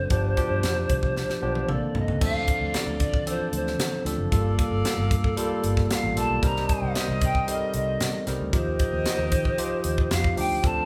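A straight 4/4 groove at 114 BPM drives this bittersweet, urban slice of polished 1980s jazz-funk pop, where a crisp fusion drum kit with a high-tuned snare and punchy kick plays a fill from 1.2 s, a dark, round, foam-muted fingered electric bass holds the low end, a barky, lightly overdriven tine electric piano sits up front beneath a distant, reedy bamboo pan flute melody with chiff, soft attack and vibrato, and a tight, warm jazz horn section adds a second line from 2.2 s as the chords move from G7 and Bbmaj9 through Dm7, Gm9, Cm7 and Ebmaj9, inside a moderate large-studio reverb.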